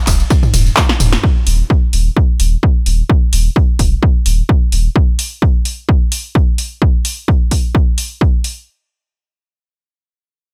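A deep, thick saturated sub bass with a fast attack and sidechain pumping sits up front in this playful, trippy acid house excerpt at 129 BPM with a light 16th-note swing, driven by a punchy, tape-warm analog kick and an up-front drum machine of handclaps, hi-hat, ride cymbal, punchy snare, tambourine and toms, whose fill at 0.8 seconds carries the opening drop into the main section before the bass stops at 4.9 seconds, leaving the near-dry drums, with only a short room on snare, clap and hats, to run on.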